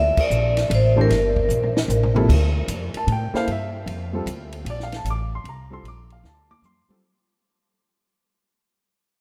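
Spiritual and cool, this modal jazz passage in G dorian swings at 152 BPM in 3/4, cut from a longer piece and set in a vast, echoing space with a long reverb tail. A close-miked vibraphone struck with medium hard mallets carries the brief, ringing melody, and an up-front pizzicato upright bass with a woody tone anchors the low end. A compact cocktail drum kit, dry and natural with a high-tuned snare and tight kick, enters at 0.2 seconds, just after the opening band accent, and plays two drum fills. An intimate baby grand piano, its action noise audible, joins on accompaniment at 1.0 seconds, just before the vibraphone drops out at 2.1 seconds. The harmony moves from Gmadd9 to Gm9 as the music begins fading out at 2.3 seconds.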